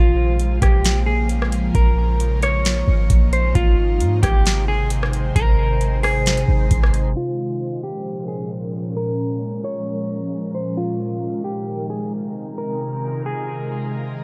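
A dry, low-pass-filtered mix opens this melancholic, ethereal slice of atmospheric cloud-rap at 133 BPM in a half-time 4/4 feel, built in Bb dorian over Bbm7 and Ab chords. A dark, fingered clean electric guitar carries the melody through delay above an airy, detuned pad with chorus, reverb, phaser and sidechain pumping. Up front sit a deep, sine-toned 808-style bass and a booming analog drum machine with crisp snare, metallic hats and rim clicks, entering at 0.4 s; both stop around 7.1 s, after which a filter sweep runs from 7.2 s under the guitar and pad.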